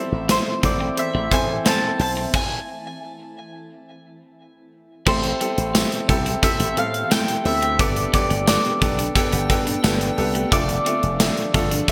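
A bright 1980s-style digital production bathed in plate reverb frames this urgent, nostalgic excerpt of pop at 88 BPM in A harmonic minor, shifting to A minor at 5.1 s, with a stop from 2.3 to 5.1 s before the harmony settles on Am7, Gadd9 and Dm/F. A woody, double-strung mandolin carries the melody through delay over a clear, up-front grand piano, while a punchy slap bass with an envelope filter and a gated drum kit, with its bright cymbals and punchy kick, drive the groove. A very quiet, slightly broken-up electric guitar riff, a dark, shimmering ambient pad, a close, jingly tambourine and a dreamy FM bell with ensemble chorus, heard only from 9.2 to 10.3 s, fill in the background.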